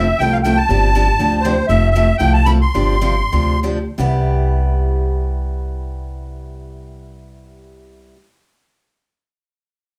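A reedy, shimmering musette accordion carries the melody up front until 3.6 seconds in this lively, swinging jazz manouche excerpt, over a bright, boxy picked parlour guitar and a woody, thumpy gut-string upright bass plucked pizzicato, with the playing slowing down from 1.7 to 4.0 seconds as Fmaj7 and suspended G chords resolve to Cmaj7, all set in a wet club reverb heard from further back in the room.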